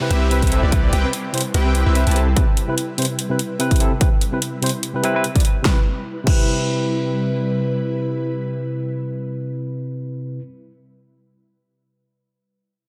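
A barky, lightly overdriven tine electric piano anchors this short future bass excerpt, sitting up front through a combo amp with sidechain pumping and digital delay, and playing accompaniment over a Cmaj7 chord from the start to 10.4 seconds. The mood is lush and bright, at 146 BPM in 4/4 with a half-time feel and a 55% swing on the sixteenths, in C major. In the opening seconds a fat, detuned sawtooth polysynth plays a bold riff with chorus and delay, while a deep, mellow 808-style bass holds a long sine note on C2 and a very quiet downlifter sweeps beneath. An ethereal, airy pad enters at 1.1 seconds with slow-attack sustained chords, colored by ensemble chorus, phaser and its own reverb. A punchy electronic kick and a dubstep kit with a huge snare, metallic hats and crash drive the groove until 6.4 seconds. A lush hall reverb surrounds the mix, and the master is dense and heavily limited.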